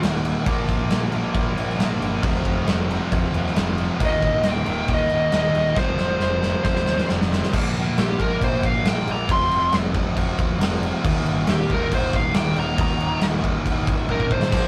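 A dark, high-gain lead guitar enters at 4.1 s and takes a solo from 7.5 s over menacing, driving hard rock at 136 BPM, where a biting overdriven guitar riff is joined by a scooped, distorted guitar in the background and a very quiet, double-tracked tight guitar that drops out at 7.5 s before a brief return at the very end, while a punchy fuzz bass and an up-front big-room drum kit with crash and splash cymbals and fills drive underneath, captured in a rough rehearsal-room sound.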